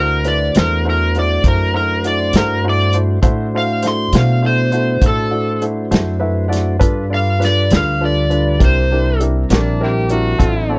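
A swaggering slow blues rolls along in a straight 12/8 feel, its soulful groove anchored by a soul drum kit with a punchy kick, a medium-tuned snare and hi-hat, heard roomy and rolled-off on top, alongside an up-front pizzicato upright bass with a dark, woody tone on steel strings. Over this, an electric slide guitar carries the melody, bright and overdriven, sitting up front until 9.2 seconds. A clear, polished upright piano with short sustain accompanies throughout and steps forward with a fill at 5.9 seconds. Beneath it all, a soft, flute-like tonewheel organ holds sustained chords with a touch of key click through a slow rotary speaker as the harmony moves from D7 to G7 and then C7. At 9.5 seconds an amplified, gritty harmonica takes up a second line in a jazz style, with light vibrato, tongue slaps and scooped notes, all set in a small room ambience in this short cut from a longer piece.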